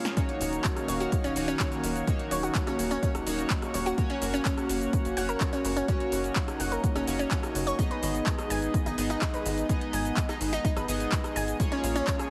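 A punchy, layered electronic kick drum sits up front in this bittersweet, emotional progressive house excerpt, which opens on a drum fill and moves with a straight feel through Ebm7, Gb, Abm and Bbm7. Around it, an overdriven deep house kit adds a punchy snare, metallic hi-hats, handclaps, rim clicks and shaker, with a large-room sheen. A tight sequencer bass enters at 0.4 seconds with driving, wave-folded sawtooth and sine tones that pulse with sidechain pumping. Above it, a round analog pluck spins chorused, delayed arpeggios, while a retro, glossy polysynth fires full-bodied, detuned stabs that also pump and echo. An airy, breathy pad holds soft, bright chords with slow attacks in the background, and the whole mix carries light digital reverb and a heavily compressed, radio-like finish.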